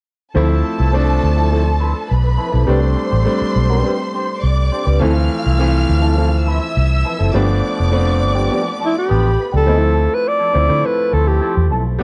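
Lush 1970s-style soul with a bittersweet, silky mood, cut from a longer piece, where a round, punchy muted electric bass sits up front beneath brilliant grand piano accompaniment, a dark, clean wah-tinged electric guitar riff and a distant, expressive bowed string section that stops at 9.7 seconds, just after a breathy, intimate alto saxophone enters at 8.9 seconds with a scooped, whispered jazz-style melody.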